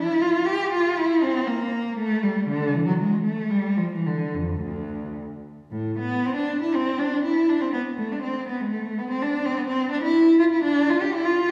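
A single warm, bowed cello plays a flowing, introspective baroque-style suite movement in D minor, in a rubato 3/4 at about 103-127 BPM, its expressive vibrato and portamento sounding both up front and distant within a recital hall's lush reverb, heard from further back in the room, across this 11.5-second passage cut from a longer piece.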